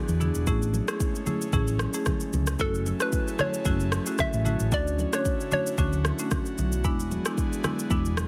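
Afrobeats in F# minor at 113 BPM with a 16th-note swing, this smooth, sultry excerpt moves through Amaj7, F#m7, Dmaj7 and E7 over a deep electronic kick, rim click and shaker, up-front round, dark hollow-body electric bass, woody rosewood marimba and thick-skinned congas sitting dry in the background. An airy, breathy pad with chorus holds soft sustained chords underneath, while a bouncy, detuned square-wave pluck with chorus and digital delay carries a mellow melody from 2.6 to 5.7 seconds. The mix has light reverb and a heavily compressed, radio-like sound.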